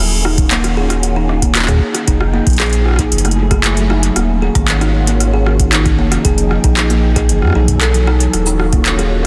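Dense and heavily limited, this short cut from a longer IDM piece sits in light digital ambience, with an intricate, melancholic mood in a straight 4/4 feel. A soft, silky string machine holds dark, vintage sustained chords through a phaser and ensemble chorus, cycling through Ebm9, Fm9 and Gbm9, while a round, sine-like sub bass sits up front with a deep, mellow sustain. From 0.2 seconds, a woody, hollow-boxed kalimba rings out thumb-plucked arpeggios in the middle of the mix, trailed by tape echo. An overdriven electro analog drum machine sits up front with cabasa, handclaps, rim clicks and metallic hi-hats, also fed through tape echo. Beneath it, a deep, overdriven analog kick drum sits in the background from 0.4 seconds until 8.8 seconds.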